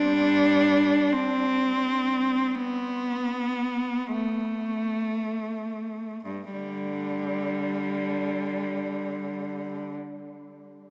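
A rich, bowed solo cello opens this lyrical, serene classical piece in free time and G major, its smooth, even vibrato tone sitting close and up front between G2 and D4. The cello slows over the first 6.3 seconds before moving into a new passage, and it plays until 10.0 seconds within a long cathedral reverb and a small-speaker sound, in a short cut from a longer work.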